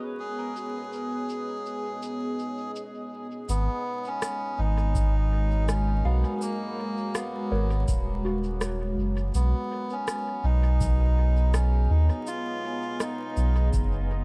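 A hazy, meditative ambient dub groove at 82 BPM in 4/4, swung on the sixteenths, with an electronic shaker and rim click ticking through low-pass filters and dub echo from 0.6 seconds. A deep, moody pad of detuned sawtooth unison with a sub octave holds sustained chords in G# dorian, moving from B69 to G#m11 and back, blurred by chorus and its own reverb. A soft FM bell traces gentle, decaying arpeggios in the background, shimmering through chorus, phaser and dub echo. Over this a reedy, breathy melodica carries the melody, its nasal tone roughened by vintage 12-bit sampler grit and trailed by echo. A round sine sub bass arrives up front at 3.5 seconds, and a tape-warm analog kick, re-recorded in a small room, settles in low in the mix at 5.0 seconds. The whole excerpt sits in a dark digital ambience dusted with vinyl crackle, cut from a longer piece.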